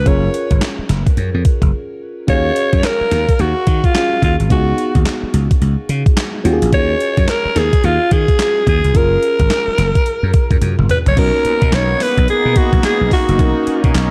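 A dark, echo-chamber-soaked production frames this slick, bouncy new jack swing R&B excerpt at 108 BPM with a swung sixteenth feel, where a raspy, gritty alto saxophone with delay carries the melody over a round FM electric piano with chorus, a growly, punchy slap bass and an overdriven, thumpy 12-bit drum machine with handclaps, with a break at 1.7 seconds, a drum fill at 10.6 seconds, and a thick, detuned unison pad entering at 11.2 seconds as the harmony moves to Bmaj7.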